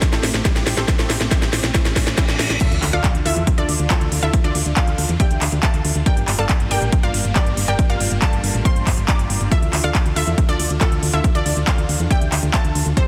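Uplifting trance at 139 BPM in D minor, emotional and soaring, this excerpt opens with a short build-up and drum fill, as a very quiet riser and reverse cymbal lead into an impact at the drop at 2.6 seconds, where a second detuned unison pluck line joins high in the background. Across a dense, heavily limited mix, a lush sawtooth unison pluck carries the melody through digital delay and sidechain pumping, while a bright supersaw pad sustains phased chords moving from Am7 through Dmadd9 and Gm7. Underneath, a dry, punchy, overdriven electronic kick sits up front with a layered techno kit of cracking snare, handclaps, smooth hi-hats and crash cymbal, and a round, dark FM bass pumps beneath the chords.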